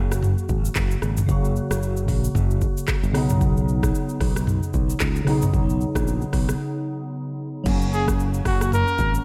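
Sunny and breezy, this afrobeats excerpt moves at 113 BPM in F# major with a swung sixteenth-note feel, the chords shifting from F# to Badd9 and back. Glassy, airy digital keys with chorus sit up front beside a punchy, growly fingered electric bass and an overdriven electronic afro-pop kit of deep kick, metallic hats, handclaps, rim clicks, shaker, toms and crash. After a break at 6.6 seconds, a smooth trumpet with vibrato takes a short solo from 7.9 seconds, all set in a dreamy mix soaked in lush hall reverb.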